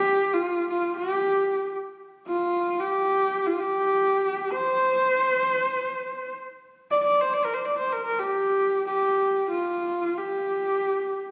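A straight 4/4 pulse at 116 BPM carries this vast, windswept Mongolian traditional passage in G yu mode, tuned to A4 = 441 Hz and cut from a longer piece. A single bowed horsehead fiddle plays solo from 0.0 to 11.3 seconds between F4 and D5, its husky, focused horsehair tone sitting close and up front with rich vibrato and gliding portamento, and the music moves into a new section at 2.0 seconds. The phone recording catches a wet recital-hall reverb, club ambience and compression around the instrument.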